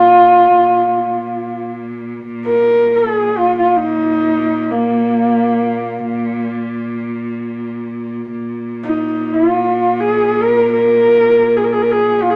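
Mongolian traditional folk music in free time, this short excerpt of 12.4 seconds feels windswept and vast. A single horsehead fiddle carries the melody up front. Its bowed horsehair strings sound dark, woody and husky as it moves between Bb3 and Bb4 with vibrato and portamento. Beneath it, one bowed cello holds a low drone on Bb2 at a much lower level, its focused tone carrying a smooth top and its own vibrato. Both instruments play together from the opening to the end, and the melodic material returns at 8.3 seconds. The tuning sits at A4 = 445 Hz, and a wet studio reverb with a 0.7-second decay gives the pair a sense of open space.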